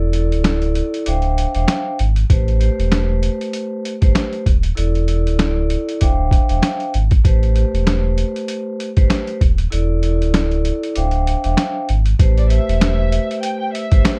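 A ringing, metallic vibraphone played with medium mallets opens this dark, tough boom-bap hip-hop excerpt in A minor, its airy chords filtered and given a cassette-tape tint as they cycle through E7sus4, Dm11 and Am9. A deep, full sine sub bass with an octave layer sits up front from the start, sustained under the harmony. The sampler-style drum kit enters almost immediately at a swung 97 BPM, its gritty, pitched-down, compressed sound built on a thumpy kick, a medium-tuned snare and hi-hat, re-recorded in a small room for a tape-warm edge, with the kick briefly dropping out twice along the way. At 12.4 seconds a woody, bowed studio violin section arrives with the melody, smooth on top with vibrato and filtered to sit quietly in the mix. Very quiet, saturated finger snaps join at 12.8 seconds, and the whole piece has a dry, shadowy production with little reverb.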